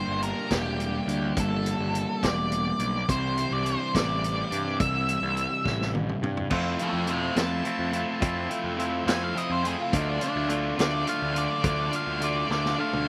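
An octave-fuzz lead guitar opens this upbeat, jangly indie rock excerpt in F major, its dark, distorted melody up front over a sludgy overdriven guitar riff and a bright, clean, twangy electric guitar riff sitting in the background, with a growly fuzz-picked bass and a punchy vintage drum kit with dark cymbals arriving within the first fraction of a second. Moving at 70 BPM in a straight 6/8 time, the chords run from Gmadd9 to Cadd9, then Fmaj7 to Dm once the lead guitar takes a solo at 6.5 seconds, just after a drum fill. The sound is dry, with little reverb and an outdoor feel lacking any room ambience.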